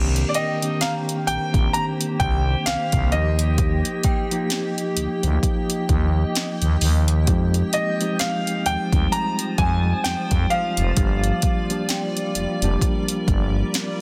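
Dense and heavily limited, this modern contemporary R&B recording sits in a digital ambience and carries a moody, sensual mood, cut from a longer piece. From the start, a mellow tine electric piano, heard as if through built-in speakers, and a cloudy, evolving granular pad with its own reverb and sidechain pumping hold the harmony through Cm7, Eb, Fm7 and Gm7. Up front, a growling, thick FM bass anchors the low end, while an overdriven electronic drum kit, re-recorded in a small room, enters at 0.2 seconds with a soft kick, sharp snare and hi-hat on a swung sixteenth feel. At 0.3 seconds a bright, intimate baby grand piano takes the melody, its action noise audible and its notes trailed by delay. Behind it all, an inharmonic FM synth chime rings in the background through ensemble chorus, tremolo and delay.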